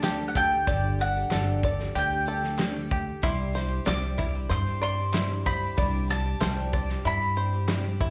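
At a straight 94 BPM in 4/4, this warm, nostalgic indie folk excerpt moves from Gsus2 to Cadd9, heard as a live gig through a club PA with light reverb. A round, double-strung mandolin carries the melody up front over a woody, dark pizzicato upright bass, a loose indie drum kit with a fat snare and punchy kick, and twangy fingerpicked banjo arpeggios carrying slapback echo and digital delay. A shimmering, octave-doubled twelve-string guitar with slapback echo is picked alongside, while a dark, full-bodied fingerpicked guitar drops out at 0.7 seconds, and very quiet hollow handclaps and a jingly tambourine fill in the rhythm until 7.8 seconds.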